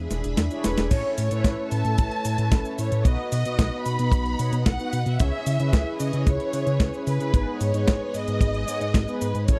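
A bittersweet, melodramatic italo disco excerpt at 112 BPM opens on lush, vintage string-machine chords and a glossy, dark, tube-saturated pulse-width synth bass over an E7 chord, joined by an overdriven, sampler-style drum machine's cabasa, crash, hi-hat and snare, round chorused synth-brass stabs and an expressive, bowed violin section melody with vibrato and tape echo, before a drum fill at 0.6 seconds brings in a tight, up-front acoustic kick at 0.9 seconds as the chords move through A, B, C#m and G#m in a dry, close 1970s-style studio sound.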